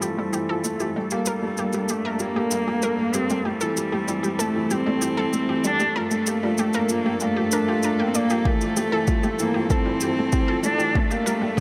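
In a straight 4/4 pulse, an overdriven shaker carries this cinematic, moving piano-and-strings electronica fragment as it builds throughout, and a deep, overdriven electronic kick arrives up front at 8.5 s. A felt-muted upright piano plays an intimate, boxy riff with audible action noise, while a smooth-topped solo cello sings the melody up front with vibrato and delay, its filter sweeping alongside that of a dark, woody string quartet holding pumping chords in the background. Bright, detuned unison pluck arpeggios shimmer behind them with sidechain pumping and delay, all set in a huge ambient reverb.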